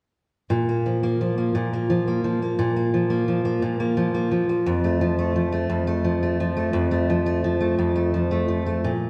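Pop in a romantic, swaying mood, this short excerpt moves at 58 BPM in 6/8, counted in dotted quarters with a straight feel. A fingerpicked steel-string acoustic guitar carries the accompaniment from 0.5 s to 9.1 s, its dreadnought tone full-bodied and sitting up front. Its range stays in the lower and middle register, from F2 to Bb3. The harmony rests on a Bb5 chord before moving to F at 4.7 s. A wet scoring-stage reverb with a 1.6-second decay surrounds the guitar, lending the phrase a spacious, lingering glow.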